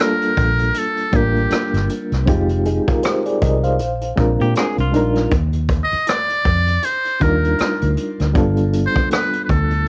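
A buzzy, breathy metal-muted trumpet sings the melody over a gritty, overdriven reed electric piano with fast tremolo and a brushed vintage drum kit with punchy kick and rim click, joined at 0.4 s by a dark, round, foam-muted electric bass, with a clean semi-hollow guitar adding a brief second line from 4.4 to 5.3 s, in this smooth, soulful neo-soul R&B excerpt at 79 BPM in G minor, swung on the sixteenths and moving from Gm7 through Fm7, Bb7 and Ebmaj7 to G7, with dry home-cassette sound and vinyl crackle.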